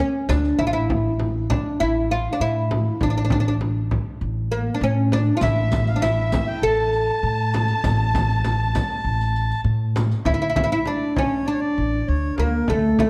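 Stately and warm, this short cut from a longer Arabic maqam ensemble piece moves at 99 BPM in a straight 4/4, set in A maqam hijaz. A plectrum-plucked, fretless oud carries the melody up front from the opening, its double strings giving a deep, woody voice. Beneath it sits a pizzicato upright bass on gut strings, thumpy and dark, while a large frame drum adds close, dry weight. At 5.4 seconds an accordion joins with a reedy, clear second line, and a bowed violin section arrives in the background, lush with vibrato and portamento and coloured by analog delay. A riq's bright jingles sparkle behind the group through the middle stretch, and a recital hall reverb lends the whole ensemble a moderate sense of space before a new section begins at 10.3 seconds.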